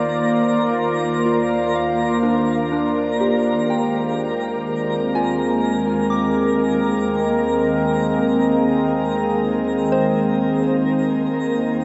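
Serene and warm, this slow ambient passage at 62 BPM in 4/4 is a short excerpt cut from a longer piece, drifting on a single sustained section that runs the full 11.8 seconds. Up front, a smooth, warbling analog pad with a vintage, wave-folded character holds sustained chords from a Bbadd9 over Eb to an Abmaj9 over Eb at 3.7 seconds, treated with chorus. Beneath it, a calm, detuned organ-like drone sustains with ensemble chorus and its own reverb, while a dark symphonic cello section bows a lush, expressive bass note on Eb with vibrato and portamento. A soft, pure FM synth bell plays mellow arpeggios in the background, fading in across the whole passage through chorus and a diffuse ambient delay, as a twinkling granular texture adds a sparkling octave-up shimmer higher up. The production is dark and warm, bathed in a very wet shimmer reverb with a long 9.0-second tail.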